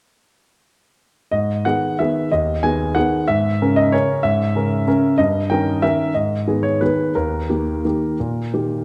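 A classical piano waltz in G# minor, elegant and wistful, moving in a flexible rubato 3/4 at roughly 166-200 BPM in this brief excerpt cut from a longer piece. A solo grand piano, intimate and up front with audible action noise, plays from 1.3 to 8.8 seconds, spanning D#2 to G#5 through a progression that begins on G#m and comes to rest on D#. The instrument sits naturally in a moderate recital hall reverb that lends a gentle sense of space.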